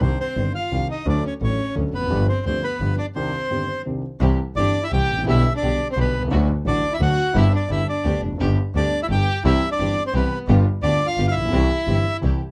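A reedy, bright bandoneon sits up front in this sultry, passionate tango fragment, carrying the melody over a grand piano accompaniment and a bowed double bass. The bass is a single close player, its airy bow and light vibrato giving it a clear, earthy presence. A bowed violin traces a second line beneath the melody with a soft attack, vibrato and expressive portamento, its tone warm. The triple metre moves with a rubato feel, and a short break at 3.2 s leads into a second section at 4.2 s, where a distant chamber string section adds rich stabs with light vibrato in the background. The melody and second line end at 12.2 s while piano, bass and strings continue briefly, all captured by close, detailed microphones with light reverb in a passage cut from a longer piece.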